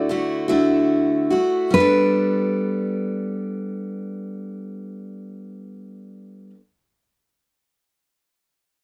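Warm and nostalgic, this brief acoustic folk passage for two guitars sways in a gentle 6/8 feel. A fingerpicked nylon-string guitar carries the melody in its upper register, with a deep, full-bodied classical tone and audible finger squeaks. Beneath it, a picked steel-string acoustic guitar with an auditorium body supplies the accompaniment, sounding bright and up front with fresh strings. The opening 1.7 seconds slow down over a Dadd9 chord before the music settles onto Gadd9, and both guitars play until about 6.5 seconds. The dry, close recording carries little reverb and the intimate character of a 1970s studio, and the clip is cut from a longer piece.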